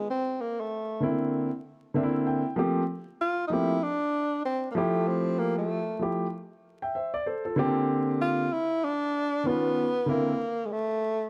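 A breathy tenor saxophone opens this cool, nocturnal hip hop fragment, carrying the solo melody up front in a jazz style with subtone, vibrato, scooped notes and a smooth top. A dark, vintage grand piano enters at 1.0 seconds with mellow, long-sustained accompaniment and a brief fill from 1.6 to 2.6 seconds, moving through lush ninth and eleventh chords over a swung 16th-note feel. Plate reverb on both instruments, a wet studio room and a bed of vinyl crackle give it a hazy, late-night air.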